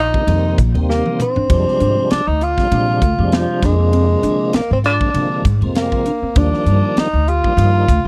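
A tenor saxophone, upright bass and mellow electric guitar begin together, with a tonewheel organ and a crisp fusion drum kit joining a split second later in this nocturnal, driving electric jazz fusion piece, cut from a longer performance with a gentle sixteenth-note swing. The saxophone carries the solo melody up front, its subtone voice shaded with scooped notes, while the pizzicato upright bass gives a woody, thumpy gut-string foundation. The organ fills in full, clean chords through a slow rotary speaker with chorus vibrato, and the guitar adds dark, fingered stabs that sit very quietly in the mix until it stops at 7.8 seconds. The drums bring a high-tuned snare, punchy kick, hi-hat, ride and toms, with a fill between 0.9 and 1.5 seconds as the harmony moves from Cm9 to Fm69. The sound is dry and close, in the manner of a 1970s studio session, and the changes pass through Bb9/F before settling on Ebmaj7.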